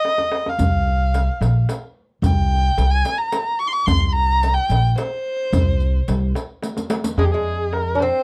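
A dry, close 1970s-style studio sound frames this hypnotic, longing Persian modal ensemble in C dastgah shur at 73 BPM in 6/8: an up-front, warm bowed kamancheh sings with vibrato and expressive portamento over a deep, band-limited tombak, while a woody, dark pizzicato upright bass and a riq with bright jingles join at 0.6 s, and drum fills mark the opening and the close of the first section before a delicate, fingerpicked nylon-string lute adds a second line at 7.2 s as the fragment moves into a new section.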